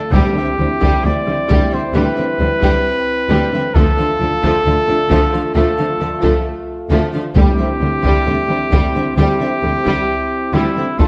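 Dramatic and relentless, this short cut from an epic orchestral film score is driven by a taiko ensemble struck with heavy sticks, while a warm, vintage solo trumpet fires stabs up front over a biting, intense double bass section and a focused cello section holding the low foundation. Lush, vibrato-rich violins carry the melody and a second line in the background, with a very quiet, smooth viola section adding accompaniment and a mellow, distant French horn section sustaining chords. Close, dry timpani strike briefly near the start and again at 7.4 seconds, all set in a dark production with a moderate scoring stage reverb.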